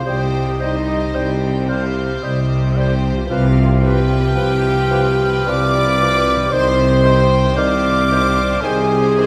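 A rubato three-beat pulse carries this yearning, solemn slow romantic passage for symphony orchestra, cut from a longer piece, as the harmony moves from Cm to G7/C at 3.3 seconds and back to Cm at 6.5 seconds. A clear, floating violin section holds the melody while a mellow French horn section stands out with sustained chords, and second lines come from a pure concert flute in the background, an intimate chamber violin section, a distant cor anglais and a soft-edged clarinet. Beneath them, a rich, very quiet viola section, a barely audible bassoon and a ringing harp playing arpeggios fill the middle, while a lush cello section, a double bass section and a tuba share the bass, the ensemble set in a moderate concert hall reverb.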